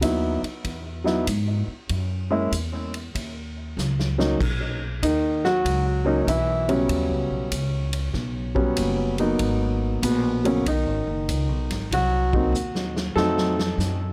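Swinging in 4/4 at 96 BPM, this cool, late-night jazz piano trio fragment in G# minor sets an up-front grand piano melody touched with analog delay over woody, thumpy pizzicato upright bass on gut strings and a big-band drum kit with punchy kick, medium-tuned snare, hi-hat, ride and crash in a natural big-room sound, the drums taking fills at 3.8 and 12.5 seconds as rootless chords such as C#m11 and D#7#9b13 move toward G#m9, all captured in a dry, gritty recording.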